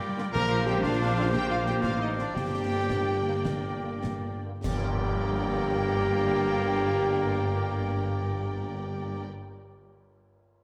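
Bathed in a wet scoring-stage reverb, this determined, adventurous heroic film cue in G minor moves in a straight 12/8 at 96-123 BPM and slows from 1.0 to 4.6 seconds. A lush, expressive violin section carries the melody over a very quiet, smooth viola section, while distant violins, a bright clarinet, an airy hollow flute and a roomy oboe add second lines. Dark French horns and a very quiet trombone section hold chords alongside mellow trumpet stabs, and woody cellos, a punchy tuba and close, soft-attack double basses form the bass. Snare, dark clash cymbals and bass drum play until 4.9 seconds, and a very quiet tam-tam rings in with the band accent at 4.6 seconds.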